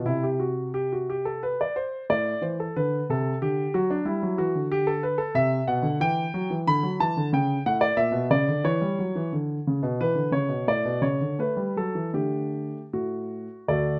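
A dark concert grand piano plays alone and close up, its mellow tone anchored by a deep bass that reaches down to D2 and climbs as high as B5. This is a classical, baroque-style suite movement in 3/4, moving with a rubato feel at a gentle 76 to 93 BPM, and its mood is radiant and serene. The passage opens in G major, settling through A minor and D onto G before moving into D major at 6.0 s. From there the harmony passes through E minor seventh, an A seventh over C sharp and a rootless F sharp seventh, then through bare open fifths that resolve onto D at 12.1 s. A moderate stone-room reverb gives the piano a natural sense of space, and the fragment ends at 14.0 s as part of a longer piece.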